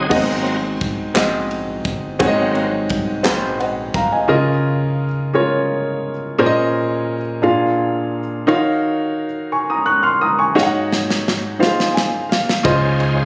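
An intimate baby grand piano with audible action noise anchors this reverent, hopeful slow gospel excerpt in 6/8 at 57 BPM, sounding from the start alongside a shouting tonewheel organ through slow rotary speaker and chorus vibrato, a rubbery square bass in the background, a punchy studio drum kit with bright cymbals, and distant group handclaps from 1.2 to 3.6 seconds, as the chords move from Ab7 through Bbm11 and Ebm9 to settle on Dbmaj9 at 12.6 seconds after piano and drum fills.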